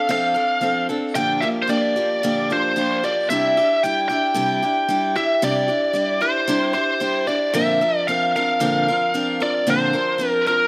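A straight 4/4 rock groove at 113 BPM drives this jangly, hopeful fragment in C mixolydian: a bright, boxy parlour steel-string acoustic guitar picks the accompaniment with audible finger squeak, while an up-front, biting electric lead with overdrive and analog delay carries the melody over F6 and Bb6, moving at 3.3 seconds into a new passage built on Cadd9 and Bbadd9, all of it sitting in a wet studio reverb.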